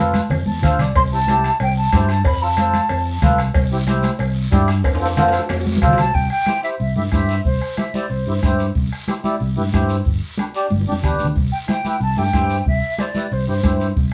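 A breathy, expressive concert flute with vibrato carries the melody of this sunny, joyful cumbia excerpt in C major at 184 BPM, entering at 1.0 s and returning in short phrases up front. A reedy, mellow accordion and a round, punchy fingered electric bass hold the harmony over soft-beater bombo, damped high-tuned congas and a raspy guiro, while ringing vintage cowbell and timbales drop out at 6.1 s. The band plays live in one room with a wet studio ambience, and drum fills mark the move into the second section at 6.2 s before the harmony reaches G and settles on C at 11.4 s.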